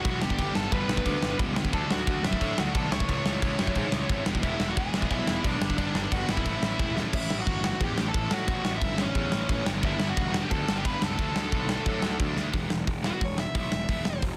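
Rowdy and upbeat, this punk rock passage is cut from a longer piece and charges along in a straight 4/4 feel. A big, dark, smooth acoustic drum kit sits up front in a big room, with a punchy kick, a medium-tuned snare, hi-hat and crash, and fills land at 7.0 and 12.4 seconds. Two double-tracked rhythm guitars pound out riffs in the background: a sludgy, overdriven one plays throughout, while a bright, high-gain one drops out at 7.1 seconds and returns briefly. A growly fuzz bass, picked and overdriven, anchors the low end, and a bluesy, distorted lead guitar with a dark edge carries the melody before stepping into a short solo in the closing seconds. The sound is dense and heavily limited, with light reverb, and the harmony shifts toward a mixolydian colour partway through.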